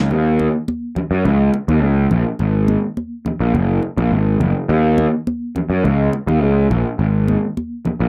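Funk excerpt in Eb dorian at 104 BPM, driving and funky, where a dark, round, punchy fuzz bass with overdrive sits up front from Gb1 to Gb2 over quieter high-tuned congas struck with hard hands, all captured in a dry, close 1970s-style studio sound.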